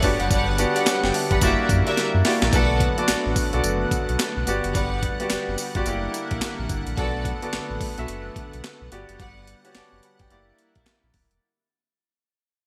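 R&B in a new jack swing style, this punchy, confident passage rides a swung groove from a gritty, sampler-style breakbeat kit with a thumpy kick, handclaps, hi-hat, snare and tambourine, all wrapped in gated reverb and placed up front. A clear, intimate grand piano with audible action noise carries the accompaniment over a deep sine sub bass with octave, while a lush, detuned sawtooth pad holds sustained chords through a Gmaj7 to F#7b9b13 to Bm7 cycle. Woody, bowed string stabs cut in until 9.5 seconds, and after a drum fill at 2.0 seconds the piece begins a fade-out, all in bright 1980s-style digital production with a plate reverb.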